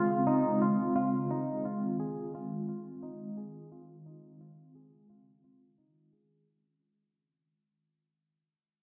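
Blissful and dreamy, this short dream pop excerpt in Ab major drifts at 87 BPM in a straight 4/4, with an ethereal, airy pad holding sustained chords under ensemble chorus, phaser and built-in reverb while a bright, twangy clean electric guitar picks compressed arpeggios through lush chorus and digital delay. Both parts sit up front from 0.0 to 6.5 seconds, moving through Dbmaj7, Ab6, Dbmaj7 again and Eb9sus4 as a filter sweep and fade-out run across the whole passage. A wet plate reverb with a 3.0-second tail gives it a glossy 1980s-style digital sheen.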